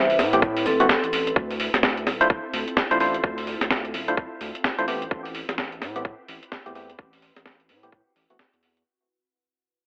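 A skippy two-step garage groove at 128 BPM with swung 16ths drives this late-night excerpt in D dorian, where a tight, layered electronic kick and a gritty, pitched-up breakbeat kit of hi-hat, shaker and snare sit up front over a deep, saturated sine sub bass, hollow chorused organ stabs echo through digital delay, a metallic, ringing vibraphone melody with its own delay sounds only until 1.3 s, and an ethereal, detuned pad pumps softly in the background through phaser and chorus as the chords move from Amadd9 to Dm9 and Am9 and the whole track, coloured by a telephone filter and light reverb, fades out from 1.4 s.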